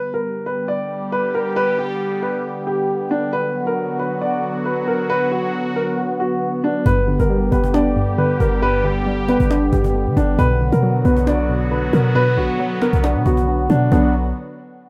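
A dark, mellow baby grand piano with long sustain carries the melody up front in this menacing trap piece at 136 BPM. It plays in a half-time feel in B harmonic minor over a resonant, detuned sawtooth pad that evolves with a slow attack and a filter swell as the chords move between G and Bm. At 6.9 s a deep, boomy 808-style bass with a clean sine tone joins, along with a warbling, lo-fi pluck with chorus and phaser and a woody, compressed cajon of soft hands sitting in the background, all in a rough home demo mix with light reverb.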